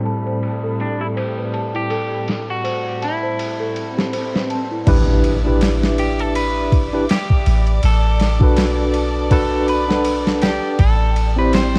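Trip hop in A dorian at 81 BPM with a swung 16th feel, brooding and dark, this excerpt opens on a bright, direct tine electric piano with tremolo and tape echo, a distant, earthy chamber violin section holding sustained chords, and a delicate, slightly out-of-tune celesta playing arpeggios through tape echo until 4.9 seconds, while a gritty, pitched-down sampler-style drum kit with a thumpy kick and filtered cymbals, snare and kick sits up front. A clean, picked electric guitar carries the melody with tape echo from 0.8 seconds, and a background electronic swell builds to an impact at 4.9 seconds, where a deep, round 808-style bass enters as the chords move from Am9 to A9sus4, Bm7/A and Am7. The whole track is steeped in warbling cassette tape, vinyl crackle, pitch drift and a filter sweep over the opening.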